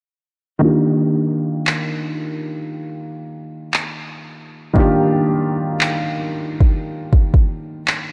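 Contemporary R&B at a slow 58 BPM in Eb major, dreamy and tender, with a lazy 16th-note swing and a hazy plate reverb soaking the mix. A baby grand piano opens at 0.6 seconds on an Ebmaj9 chord, intimate and up front with audible action noise, short sustain and a low-pass softened tone. At 1.7 seconds a produced electronic kit joins with a soft kick and handclaps, carrying a gritty vintage sampler texture and the small-room character of a re-recorded drum sound.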